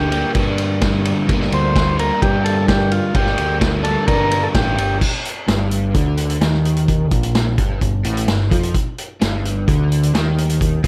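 A buzzy, clean transistor combo organ takes a solo with slapback echo over the first 5.0 seconds of this trippy, hypnotic psychedelic rock piece in G minor, moving at 129 BPM in a straight 4/4. Beneath it, an overdriven, double-tracked semi-hollow guitar plays a riff through a rotary speaker, a growling, round picked bass carries its own overdrive, and an up-front vintage acoustic drum kit brings dark cymbals, a punchy kick and a gritty, saturated, rolled-off sound. Light reverb lends a small-room feel, and the guitar, bass and drums carry on after the organ stops until the clip, cut from a longer piece, ends at 10.9 seconds.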